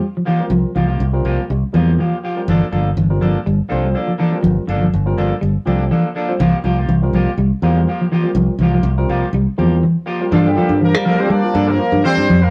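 A direct, up-front fingered electric bass drives this funky, lightly swung afrobeat groove, joined by dark, clean arpeggios from a semi-hollow guitar, twangy, slightly broken-up stabs from a second electric guitar, and a bright, barky tine electric piano accompanying through a combo amp. At 10.3 seconds a punchy, tight horn section takes the melody in octaves with vibrato and slapback echo, sounding distant and roomy, while a clear trombone plays a second line in the background. The rough rehearsal-room recording carries moderate reverb and is cut from a longer piece.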